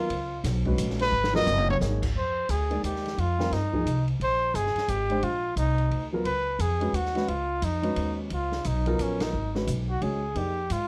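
Cool and intense, this modal jazz excerpt moves at a brisk 175 BPM in a swung 3/4, drifting between Db9sus4 and F9sus4 chords. A warm, up-front trumpet carries the melody with vibrato and a soft attack, playing a solo passage over the opening 2.2 seconds before the music shifts into a new section. Beneath it, a dark, mellow baby grand piano supplies accompaniment, while a woody, thumpy upright bass with gut strings is plucked up front, its tone roughened by transformer saturation. An open acoustic drum kit in a small room adds dark cymbals, a medium-tuned snare and a boomy kick, with a drum fill from 1.1 to 1.8 seconds and a band accent landing at 9.2 seconds. Light reverb and the worn, warbling pitch drift of old cassette tape give the recording an aged character.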